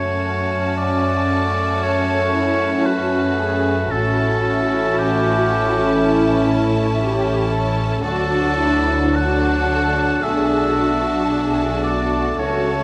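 A yearning, elegiac classical passage, cut from a longer piece, unfolds at a slow, rubato pace in 4/4, moving from F# minor through A7 and D to a closing Bm7. A warm, focused violin section carries the melody on a high A5 with lush vibrato, while a clear oboe sings a second line that stands out as the most prominent voice in the texture. A very quiet, bright clarinet and a second, close violin section add further lines beneath, and in the background a mellow bassoon and a rich viola section provide gentle accompaniment. A distant, dark French horn section holds sustained chords, and a double bass section anchors the bass, joined at 1.8 s by a woody, shadowy cello section. The whole ensemble sits in a recital hall whose reverb lends the sound a roomy, enveloping bloom.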